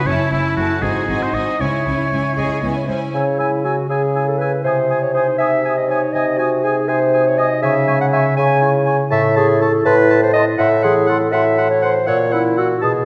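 Up front in this stormy, urgent orchestral passage in 6/8, a solo bassoon with light vibrato and soft attack plays accompaniment from 3.1 s, following a warm classical clarinet that enters at 2.4 s, alongside a clear, close-miked oboe, a ringing, thumb-plucked concert harp in arpeggios and a distant, hollow, mellow flute section, while a lush, focused symphonic violin section carries the melody over a smooth studio violin section, a close viola section, an intense cello section and an expressive double bass section until 3.1 s, all set in a wet scoring-stage reverb.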